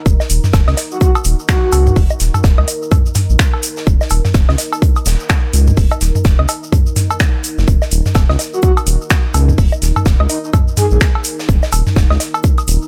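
Minimal techno at 126 BPM with a swung 16th-note feel and a cool, sparse mood, built on a punchy, tape-warm electronic kick up front and a round, deep analog bass that pumps against it, while a detuned, moody ambient pad with chorus and reverb fades in slowly beneath, a metallic-hatted house kit adds finger snaps, a gated 80s kit contributes airy hi-hat, shaker and a medium-tuned snare, a grainy tube shaker sits in the background, dry analog woodblock, toms and cowbell dot the groove, and a breathy, flute-like synth lead with vibrato, chorus and dub echo drifts in briefly at 0.9 seconds and returns at 8.5 seconds.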